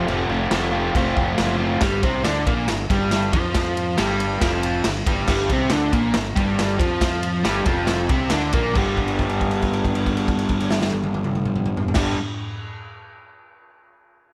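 A straight 4/4 pulse at 138 BPM drives this raw, swaggering garage rock excerpt in G minor. The drum kit sits up front, with its boomy kick, medium-tuned snare, toms, crash and ride sounding gritty and saturated in a small, pumping room with a rolled-off top. A crunchy, double-tracked overdriven guitar carries the picked riff between F2 and F4, also up front and washed in spring reverb. Underneath, a dark, round fuzz bass played with the fingers holds the low end from F1 to F2. The harmony moves from F to G minor at 1.8 seconds, then settles on a G5 at 8.8 seconds with a held note lasting until 12.0 seconds, the mix sitting in a light studio reverb.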